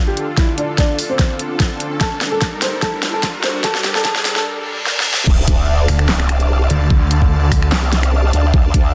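A lush supersaw pad opens this heavy, chaotic wobble dubstep excerpt, holding sustained chords with a sidechain pump, while an intimate baby grand piano with audible action noise plays a short melody through a low-pass filter and digital delay. Overdriven electronic drums build up front, with a knocking kick, a huge snare, hi-hat, handclaps, finger snaps and crash cymbal driving a half-time, lightly swung feel through drum fills and a filter sweep. In the background, a riser and then a reverse cymbal lead into the drop at 5.3 seconds, marked by an impact. There, an aggressive, wobbling growl bass with formant filtering, chorus and a bright, saturated edge anchors the low end. At 5.9 seconds, a snarling distorted saw bass with detuned unison and a moving notch joins it briefly. Light reverb and digital ambience sit around a dense, heavily limited modern master.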